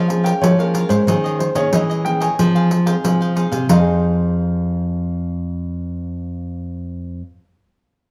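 Nostalgic yet lively, this short excerpt cut from a longer samba and choro piece moves at 92 BPM in a straight 4/4, set in F minor. A baby grand piano with a natural, warm tone carries the melody between Bb4 and Ab5, while a crisp, picked cavaquinho and a fingerpicked nylon-string guitar fill in the accompaniment, the guitar bright with fresh strings, audible finger squeak and an up-front presence. A second nylon-string guitar, dark and thumb-plucked in a classical manner, supplies the bass from F2 to F3. A jingly pandeiro played with soft hands joins at 0.1 seconds and stops at 3.8 seconds, around the move from the opening section into the next. The harmony passes from Db6/F through Eb7sus4 to Fm7, and the whole has the rough feel of a home demo, with small room ambience and studio reverb.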